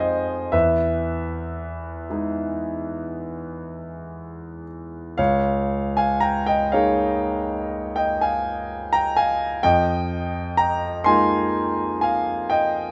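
Classical impressionist solo piano in a slow, rubato 9/8 at around 38-43 BPM, this luminous, hazy excerpt features a clear, up-front concert grand with deep bass and long sustain, ranging from Db2 to C6 in light reverb as its harmonies drift from Fm7 through Emaj7 and Db69 to Fm11 over 12.9 seconds.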